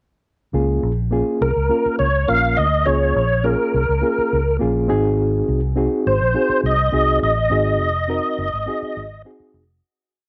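Uplifting and joyful, this short soul piece moves at 103 BPM in Db major, with a reedy, mellow electric piano comping close-voiced quarter-note chords through its built-in speakers, colored by a fast tremolo, over a dark, round, foam-muted fingered bass that plays a melodic, syncopated line with muted ghost notes and chromatic approach notes. From 1.4 seconds a clear, warm tonewheel organ takes the lead with a free melody that never settles on a recurring motif, its key click audible beneath chorus vibrato, a slow rotary speaker and slapback echo. The harmony moves from Db6 to Ab7 in a digital ambience before the whole verse fades out from 7.5 seconds.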